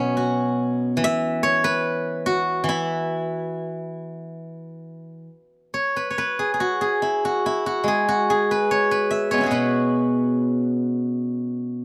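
In a loose, rubato two-beat pulse with uneven beats, this elegant and serene fragment of Chinese traditional music features a solo steel-string zither played with fingerpicks, its silvery, ringing tone placed up front in a dry, close 1970s-style studio sound, with a new section arriving at 4.4 seconds.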